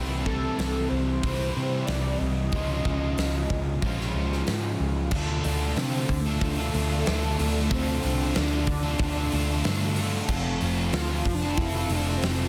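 Crunchy, double-tracked overdriven guitar and a round, foam-muted picked bass open this dreamy, hazy shoegaze and dream pop excerpt at 93 BPM in a straight 4/4. The guitar riff is bathed in lush chorus over chords moving from C6 to Dbadd9, then to Dm7 at 5.1 seconds and on to F. From 0.3 seconds a velvety sawtooth, triangle and sine synth lead with a sub octave, vibrato, chorus and slapback echo carries the melody, while an up-front rock kit with a fat snare, bright stone-room sound and a tight, softly clipped kick plays beneath, all set in light small-room reverb and a dense, heavily limited modern master.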